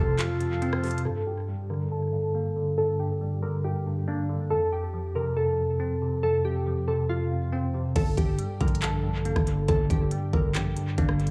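A small-room ambience and light digital reverb give this echo-heavy trap fragment its space, with a tape echo clinging to the glassy, wave-folded digital keys that carry the melody between C4 and Bb4 through chorus and a low-pass filter. It is brooding and menacing hip hop at 139 BPM in a half-time 4/4 feel, set in G minor and moving between F and Gmadd9. Underneath, a bell-like tine electric piano plays bright, clean accompaniment from F2 to C4, while a reedy, nasal hand-pumped harmonium breathes sustained chords only in the first second. The trap kit, with knocking kick, crisp hats, handclaps, rim clicks and a crash, appears briefly after 0.2 seconds for a short break, then drops out while a filter sweep runs through the middle stretch from 1.1 seconds. At 8.0 seconds the kit and the growling, buzzy 808-style bass, sitting between F1 and Bb1, return together to drive the final section to the end.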